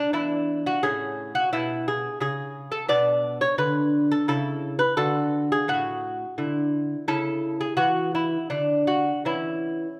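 A delicate, fingerpicked lute with gut strings, paired courses and some octave-doubled strings sits up front throughout this 10-second excerpt, playing solo across a range from E2 to D5. It is a serene, dance-like baroque-style classical piece in 3/4 and A major at 86 BPM, taken with a rubato feel, moving through chords such as A, Bmadd9, D and C#madd11. A moderate recital-hall reverb, as in a church or concert hall, surrounds the instrument with a gentle sense of space.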